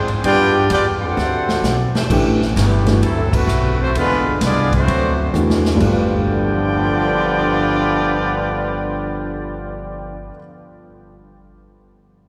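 In this energetic, brassy big band swing excerpt at 130 BPM in G mixolydian, an up-front trumpet section carries the melody over a mellow trombone second line and a woody pizzicato upright bass. A distant, roomy drum kit with dark cymbals and a boomy kick adds fills before dropping out at 5.9 seconds, while a very quiet, clear saxophone section sustains a brief chord near 1.9 seconds. An intimate grand piano with audible action noise enters in the background at 2.1 seconds as the harmony moves through chords such as D13 and E7b9 toward a closing G9, and a band accent punctuates the texture at 3.3 seconds, all set in a wet, cathedral-like reverb.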